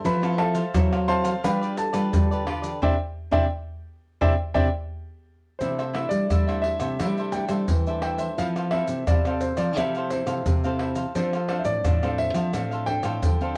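Worn, warbling old tape with drifting pitch and light reverb colours this joyful, playful samba and choro, cut from a longer piece. An intimate concert grand piano with audible action noise and deep bass carries the melody, playing solo for the first 5.6 seconds with band accents from 2.8 seconds, over a mellow, crisp picked cavaquinho, a fresh-stringed fingerpicked nylon-string guitar with finger squeak, and a dark, woody, thumb-plucked nylon-string guitar on bass. Up front, hard-handed maracas, tight surdo, pandeiro and tamborim sound from a small room as the chords move from Fmaj7 and G7 to Cadd9, C69 and Dm7.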